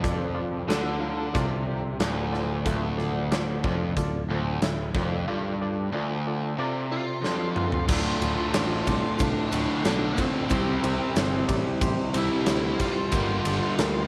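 Classic rock at 92 BPM in D minor with a gritty, driving feel: a huge arena drum kit with a punchy kick and bright cymbals sits up front beside a biting overdriven guitar riff, over a growly picked electric bass, while a hollow-body guitar with spring reverb and a reedy electric piano with harmonic tremolo and an early fill churn in the background, a smooth lead guitar melody enters at 6.9 seconds, and a drum fill leads into a grainy, very quiet tube shaker at 7.9 seconds as the chords move from Dm to C and Gm.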